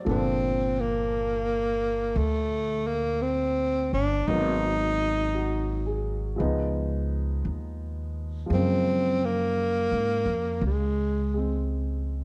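A jazz ballad in a slow 4/4 at 57 BPM, swung gently on the eighths, this short excerpt cut from a longer piece carries a late-night, romantic mood. A breathy tenor saxophone takes the solo melody up front, its mellow subtone, soft attacks, scooped notes and vibrato staying within a narrow range from Ab3 to Eb4. Beneath it, a pizzicato upright bass with gut strings sits close and present, its woody, thumpy tone anchoring the low end between G1 and Ab2. A smooth, vintage-sounding grand piano provides accompaniment further back in the mix, starting at 0.0 s and running to the end at 12.2 s. The harmony moves from Gm9 through Abm9 and Db7 to settle on Gbmaj9 at 8.5 s, all wrapped in a light studio reverb.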